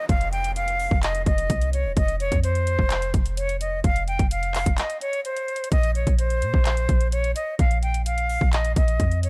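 A dry, close-sounding excerpt of dark, hard-hitting trap at 128 BPM in a half-time feel, opening on a faint electronic downlifter in the background that runs until 2.0 s. An airy, metallic concert flute carries the melody up front with vibrato, tongued notes, an unsteady edge and a delay trail, over a deep, boomy sine 808 bass with a fast attack and decaying tail. A tape-warm electronic kit of hard-clipped kick, metallic hats and handclaps punches beneath, pausing for a short break at 4.8 s before the harmony moves from F5 to Bbsus2 at 5.7 s.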